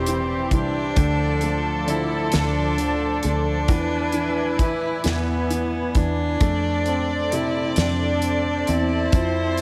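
Aching and melancholic, this slow six-eight pop ballad moves at 44 BPM through Cadd9/E, Dm7, E7 and F, with an up-front solo cello carrying the melody in a rich, biting, nasal tone with light vibrato, an airy bow and analog delay. A studio violin section floats above it in a soft sul tasto second line with slapback echo and delay, while a lush, warbling, detuned pad sustains chords with chorus and a baby grand piano accompanies quietly in the background. A dark, foam-muted fingered electric bass and a dry, damped 70s drum kit with a fat snare and tight kick, entering at 0.1 s, anchor the low end, all set in a lush hall reverb with a big arena sound.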